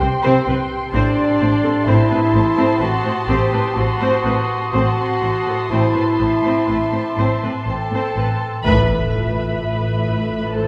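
Heard from further back in a reverberant scoring stage, this eerie, mysterious suspense cue, cut from a longer film score, has a shadowy, distant quality. Con sordino strings form the bed: a rich, soft-edged viola section carries the accompaniment while dark cellos and double basses hold the low end with vibrato, and a chamber violin section plays a second line above them. From 0.9 s a studio violin section takes the melody with light vibrato and a smooth top, joined by a clear, present classical clarinet on its own second line, while a second, veiled chamber violin group adds a faint high texture in the background. A metallic, ringing vibraphone played with hard mallets and fast motor vibrato glimmers airily behind the strings throughout. At 8.7 s the music shifts as a huge, bright impact lands with a band accent and a mellow, fingerpicked concert harp begins a low riff in the background.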